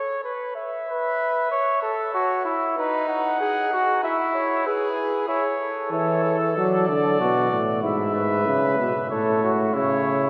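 Bathed in a long, wet cathedral reverb, this lively and stately classical canzona fragment for brass opens with a mellow, smooth-topped cornet carrying the melody, joined at 0.9 seconds by a mellow trumpet second line with light vibrato set back in the room, while a warm, softly attacking trombone with vibrato enters at 5.9 seconds to supply a distant, roomy accompaniment beneath the imitative voices.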